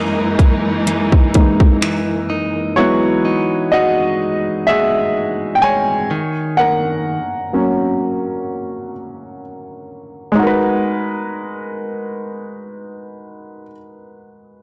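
A longing, moody slice of contemporary R&B, cut from a longer piece, moving at a slow, gently swung pace. A baby grand piano with a natural tone and short sustain sits up front throughout, carrying the accompaniment and featured as a solo through the first 10.4 seconds, over chords that move from F#13 through Emaj9 and D#m7 before settling on G#m9. At the opening, a lush, bowed string section adds expressive vibrato in sustained chords, while a clean, picked electric guitar, recorded direct and compressed, plays arpeggios through digital delay until 7.2 seconds. A trap kit of finger snaps, metallic hats and a hard-clipped kick pushes forward only briefly at the start, its snare softly clipped, and a barely audible electronic downlifter drifts underneath. Light reverb and digital ambience frame a blown-out, overdriven recording.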